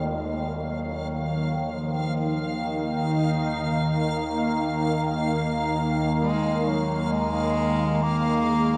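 Ominous and desolate, this short dark ambient drone excerpt sits in Eb minor at 67 BPM, cut from a longer piece and lasting 8.8 seconds. A clear, classical-style solo bass clarinet carries the melody between Eb3 and Bb3, fading in across the whole passage through a tape echo. Beneath it, an up-front sweeping resonant pad holds sustained chords, its airy, detuned sawtooth tone evolving with a filter swell and a breath of noise under chorus. Lower still, a drone with moving overtones blends sawtooth and sine into a bright, resonant hum treated with chorus, phaser and its own reverb. High above, a faint reversed texture swells on a single note, granular and dreamy with a triangle-wave shimmer. The whole is bathed in a huge, wet ambient reverb with a cassette-tape character, giving the sound a cavernous, worn atmosphere.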